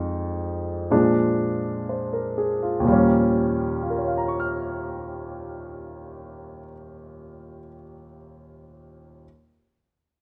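A warm concert grand piano, up front with a deep bass, plays sophisticated, swinging solo jazz at a slow 62 BPM in 4/4 and Eb mixolydian, moving from Fm7 to Bb7 and settling on Eb9 at 2.9 seconds, all inside the moderate reverb of a large studio, in a 9.3-second fragment cut from a longer piece.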